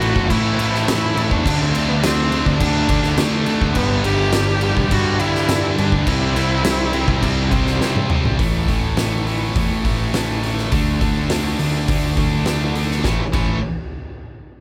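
A straight 4/4 pulse at 104 BPM drives this angsty, cathartic stretch of quiet-loud alternative rock in A minor. An oversized, low-tuned acoustic drum kit with a fat snare, boomy kick and gritty, pumping room sound sits up front beside a fuzzed, overdriven picked electric bass, while a rich, bowed cello carries a smooth vibrato melody until 7.8 s over a barely audible reedy tonewheel organ with key click and rotary speaker. A very quiet double-tracked heavy guitar plays the riff with a bright high-gain guitar and a thick fuzz guitar in the background. The cello falls silent as a drum fill begins at 7.8 s, and once the fill ends at 8.4 s the organ and double-tracked guitar drop out, leaving the other guitars, bass and drums to push through A5 and D5 changes under light reverb until the cut at 13.6 s.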